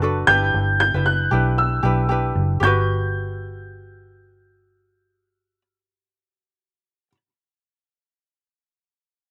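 A lightly swung 116 BPM groove in 4/4 carries this sunny, easy-going acoustic pop fragment in G major, where a woody, slightly detuned upright piano sings a high melody with slapback echo over fingerpicked ukulele accompaniment (also with slapback echo) and a dark, round, foam-muted vintage electric bass, moving from Em7 to Gmaj7 at 2.6 seconds in a dry outdoor sound.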